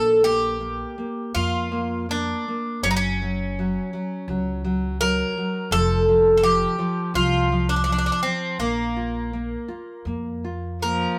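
Lightly reverberant and captured live in one room, this mournful, passionate fado-style ballad at 83 BPM moves with a rubato feel as a bright, metallic, double-strung Irish bouzouki carries the melody up front over full-bodied fingerpicked nylon-string guitar and woody pizzicato upright bass, while a warm, intimate, sul tasto cello slips in with a brief second line at 10.8 seconds just before this fragment of a longer piece ends.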